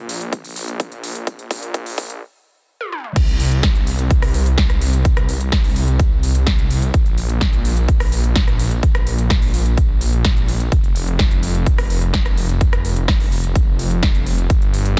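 Powerful and euphoric, this festival progressive house excerpt at 127 BPM in straight 4/4 opens with a filter-swept build-up of drum fills from an overdriven big-room dance kit, with crisp hats, punchy snare, rim clicks, toms and crash. These play over a thick, menacing detuned saw bass with sidechain pumping, joined at 0.3 seconds by a punchy, up-front electronic kick. The music pauses for a stop at 2.2 seconds, then hits the drop at 3.2 seconds as the kick drives the dense, heavily limited, dry mix.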